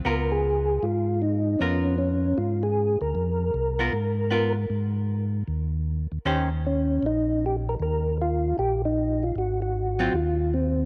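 A swung 4/4 groove drives this greasy soul jazz organ trio fragment, cut from a longer piece. The melody comes from a soft, flute-like tonewheel organ voice with second-harmonic percussion, clean and up front, colored by chorus vibrato and a slow rotary speaker. Beneath it, a second tonewheel organ carries the bass line in a round, dark tone, lightly overdriven, with audible key click, chorus vibrato and the same slow rotary motion. A clean, picked hollow-body archtop guitar adds shadowy electric comping from the start until 6.5 seconds, returning only for a brief touch at 10.0 seconds. The harmony opens on a Db13 and later passes through Ab and Eb chords, all set in a light reverb that keeps the trio close and intimate.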